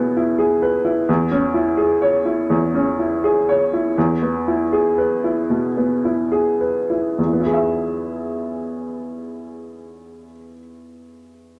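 Intimate and hopeful, this short classical excerpt unfolds in E major at an unhurried 68-87 BPM in 4/4, with a rubato feel that lets the time breathe. A single upright piano carries the music as accompaniment from 0.0 to 11.6 seconds, spanning E2 to E5. Its tone is clear, woody and boxy, sitting up front in the mix. The harmony moves from E to C#m/E at 1.1 seconds and settles back on E at 4.0 seconds, while the pace slows through the opening 7.2 seconds before a new section takes over until 10.6 seconds. A wet studio reverb gives the instrument a short halo around its close character.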